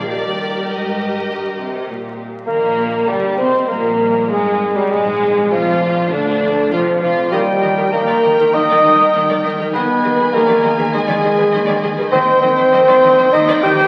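A stormy, dramatic romantic orchestral movement in Eb major at 100 BPM with a rubato feel opens on lush bowed strings, rich focused violins carrying the melody over a softer second violin line, very quiet violas with portamento, close cellos in the bass and faint ringing harp arpeggios, before at 2.5 seconds a distant silvery flute, a background clarinet, an up-front mellow bassoon, dark background horns holding chords and woody double basses join, all heard through a wet scoring-stage reverb with the crackle of a very old 78 rpm record.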